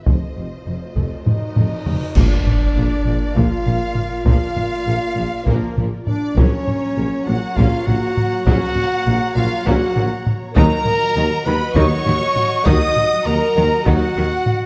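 Driving taiko drums struck with hard sticks mark out a straight 7/8 pulse at 200 BPM in eighths, opening this triumphant, majestic passage of epic orchestral film score, tuned to A4 = 438 Hz and cut from a longer piece. Up front in a small-room sound, the taikos play a fill from 1.3 seconds. A huge, dark reverse cymbal rises at 1.9 seconds and leads into an impact. At 2.2 seconds a full-band accent lands with bright clash cymbals and concert bass drum, and the harmony moves from F7 to A# and later to F#/A# and D#m. A lush violin section carries the melody with vibrato and a soft attack, backed by a second violin line. An airy, hollow concert flute plays a second line of its own in the background, while a vintage-toned trumpet adds stabs. A mellow French horn section and a studio string section with portamento hold sustained chords, and a focused viola section fills out the accompaniment. 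Underneath, a rich cello section, a very quiet woody double bass section and a dark tuba share the bass, all set in a moderate scoring-stage reverb.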